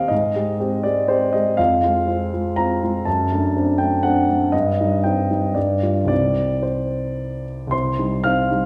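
A warm grand piano sounds up front from the first moment, carrying this brief romantic character piece in C minor alone for its full 8.7 seconds, with long, ringing sustain. The mood is bittersweet and passionate, moving in a rubato 3/4 at roughly 109-125 BPM through Abmaj7, Fm, D7/F# and Cm/G before settling on a G5 and then Cm. The playing spans the keyboard from C2 to F6, and a wet recital-hall reverb lends the spacious resonance of a church or concert hall.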